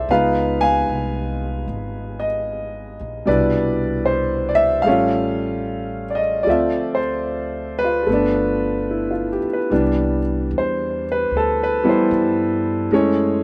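A slow swung 4/4 at 75 BPM sets an unhurried, late-night pace for this tender jazz ballad in C major, cut from a longer piece. A clear, intimate upright piano sits up front as the accompaniment, its boxy tone carrying audible action noise, long sustain and a slapback echo. Beneath it, a pizzicato upright bass on gut strings gives a thumpy, woody low end, playing from the start to the close at 13.4 seconds. The harmony moves from Db9 through Cmaj9, Aaug7, Dm7 and G7, then returns to Cmaj9 when a new section begins at 9.7 seconds before touching F#m7. Light reverb surrounds the pair in an open, outdoor-sounding space with little room character.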